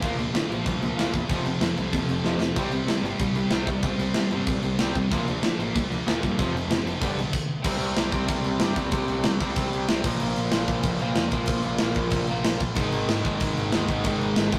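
A rough rehearsal-room recording with light reverb opens on an urgent, angry stretch of punk rock, cut from a longer piece and driving at 188 BPM in a straight 4/4. Three picked electric guitars play riffs from the first second, a cranked stack guitar with overdrive and a crunchy overdriven guitar sitting in the background, while a thick, double-tracked fuzz guitar with distortion drops out at 7.3 seconds and returns at 12.8 seconds. A growling picked electric bass, direct and amped with overdrive, anchors the low end throughout. The tight metal drum kit sits up front with a big-room sound, bright cymbals, a medium-tuned snare and a tight kick, and it throws in a short fill at 2.2 seconds. The chords move through Bb, F5, C5 and G before the music settles into C minor at 7.7 seconds, where the second section pushes on through Bb5 and Ab5.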